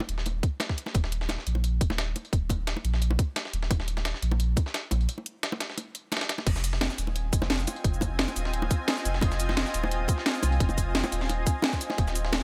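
Liquid drum and bass at 174 BPM in F minor, soulful and melancholic, this excerpt opens on round, low-tuned bongos, then a deep sine sub bass, an overdriven electronic kit with cracking snare and bright hats, a gritty, tape-warm sampler-style kit with filtered hats and snare, and a tight, up-front overdriven kick all arrive almost at once, with a brief break at 5.1 seconds before a shimmering, ethereal pad with chorus and reverb enters at 7.1 seconds on an Fm7 chord.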